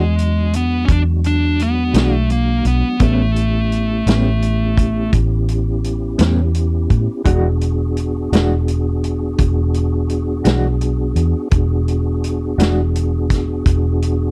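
A dry, close 1970s-style studio sound frames this rollicking, soulful slow blues in 12/8, cut from a longer piece and moving between E9 and A9 chords. An overdriven, smooth lead guitar carries a short melody up front until 5.1 s, while a clean, fingered electric guitar adds tremolo-shaded accompaniment until 12.8 s and a flute-like tonewheel organ holds soft chords through chorus vibrato and a fast rotary speaker, its key click audible. Underneath, a round, punchy foam-muted bass with tube saturation sits beside a gritty acoustic drum kit of tight kick, medium-tuned snare and hi-hat with a rolled-off top.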